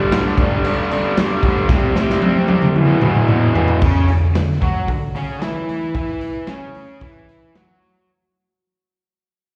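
A straight 4/4 pulse at 113 BPM drives this swaggering, raw garage rock piece, built on an up-front acoustic drum kit of punchy kick, medium-tuned snare, hi-hat, toms and dark cymbals, its sound saturated and gritty with a rolled-off top and a pumping small-room feel. A bright, overdriven electric guitar, picked and double-tracked with slapback echo, carries the riff through G5, C5 and E5 chords, while a drum fill runs from 1.7 seconds until the music begins fading out at 3.8 seconds on a C#madd11 chord. The whole recording has the light reverb and room ambience of a live gig heard through the venue's PA and captured on cassette tape.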